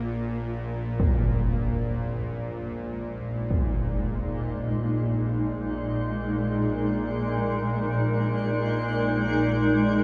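A granular cloud pad dominates this ominous, unsettling dark ambient drone, its blurred, evolving chords spanning Bb2 to Bb4 in free time through the whole 10-second fragment of a longer piece. Beneath it, a bowed-like drone holds the low register between Bb1 and Bb2; its tense, string-like sawtooth tone carries a noise layer, ring modulation and vibrato, and it sits up front alongside the pad. Both parts swell in with slow attacks and sustain with long releases. A huge, bright impact arrives at 1.0 seconds, softened by a low-pass filter, and rings until 3.8 seconds as the harmony shifts from Bb5 to Ab5/Bb. A cavernous cathedral reverb with a 5.5-second decay wraps the sound in a damp, shadowy space.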